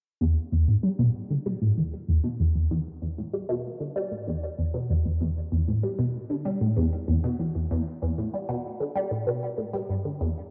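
Expansive and hypnotic, this ambient excerpt in E minor moves at 96 BPM in a straight 4/4, tuned slightly sharp to A4 = 441 Hz. A lone squelchy, detuned synth pluck with a ring-modulated edge sits up front, playing solo from 0.2 to 10.3 seconds between E2 and G3. It is coloured by phaser, lush chorus, delay and cassette-tape grit, all bathed in a wet spring reverb with the homespun character of a cassette home recording.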